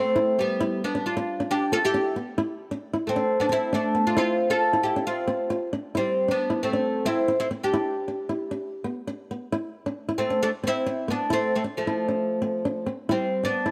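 Sunny and danceable, this brief highlife excerpt, cut from a longer piece, puts a bright, woody, plectrum-plucked oud up front on the melody, its doubled strings giving a deep, fretless voice. Beneath it, a fingerpicked flamenco guitar with fresh strings supplies a softer accompaniment, with audible finger squeak, across the full 13.7 seconds. Light reverb frames both parts as a fresh passage begins at 6.0 seconds over chords moving through C, G, F and D.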